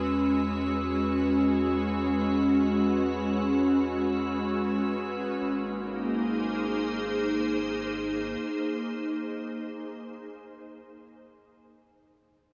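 Floating in free time, this weightless, serene ambient fragment centers on a soft, pure organ-like pad holding sustained chords up front with ensemble chorus, moving from E to Ab at 5.4 seconds, while a deep, round sub bass sits beneath until 8.4 seconds and a glassy texture of drifting overtones hovers in the background with chorus until 5.4 seconds, all bathed in a dreamy plate reverb with a small room ambience.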